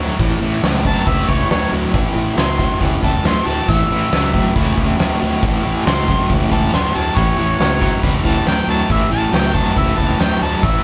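Raunchy and driving, this excerpt of straight 138 BPM blues rock and southern rock in A mixolydian, played live in one room with light reverb, features a bright, punchy harmonica soloing with light vibrato and scooped notes from 0.9 seconds over a dark, double-tracked overdriven guitar riff with tremolo, a round fuzz fingered bass, and an oversized low-tuned drum kit with a boomy kick, fat snare and dark crash cymbal in a big, pumping room.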